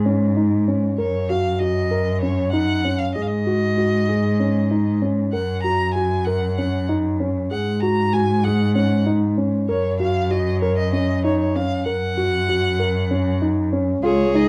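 A dark, bowed cello opens this restless yet hopeful piece of contemporary chamber music, holding a low bass line from the very start with expressive vibrato and portamento, close and up front. A fraction of a second later a concert grand piano joins with arpeggios in its middle register, its tone mellow and vintage with a short sustain. At 1.0 seconds a single violin enters with the melody, rich and focused, sung with vibrato from a more distant place in the room. The music moves in 7/8 at 193 BPM counted in eighths, with a straight feel in F# major, and the harmony rocks between G#5 and F# chords. Just before the cut, at 14.0 seconds, a viola slips in with a brief second line, intense and up front with a smooth top, all under light reverb in a dark, warm production.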